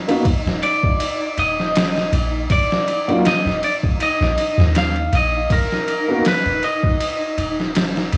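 A dark, airy wind-like noise texture opens this brooding, melancholic trip hop excerpt at 80 BPM in Eb harmonic minor. It is joined at once by a muffled, overdriven sampler-style drum kit with thumpy kick, snare and ride, and by a felt-muted upright piano with audible action noise, tremolo and tape echo that stops at 6.2 s. Moments later come a soft, round 808-style bass with tube saturation and an up-front, twangy electric guitar melody at the edge of break-up, roughened by 12-bit grit, cassette tape and tape echo, all in a lightly reverberant home cassette recording.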